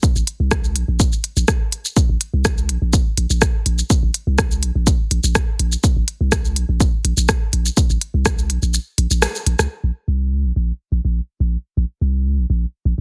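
A deep, sine-toned sub bass sits up front in this cool, quirky minimal techno cut from a longer piece, moving between Bb1 and Db2 in Bb minor with a fast, pitch-drop attack, sustained notes and sidechain pumping. Beneath it at a straight 124 BPM in 4/4, a punchy, tape-warm electronic kick drives the groove until 8.4 seconds. A layered techno drum kit of smooth hi-hats, rim clicks and shaker runs beside it, with soft clipping on the snare and a small room ambience shared with the kick. The full band lands an accent at 9.2 seconds, and the drum kit stops at 9.7 seconds, leaving the bass alone for the closing stretch. The production is dry and dense, with a heavily limited modern master that keeps every part close and forward.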